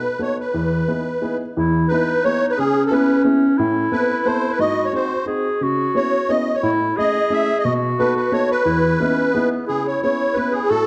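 Bathed in a wet recital-hall reverb with a dark production, this nostalgic, whirling musette waltz in E major moves at 177 BPM in 3/4. A reedy, shimmering accordion in musette tuning carries the melody up front over a mellow, woody upright piano with long sustain. At 1.6 seconds a warm, classical-style clarinet joins with a second line touched by tape echo, as this cut from a longer piece circles through chords such as C#m7 and G#7 before turning toward a new section near its close.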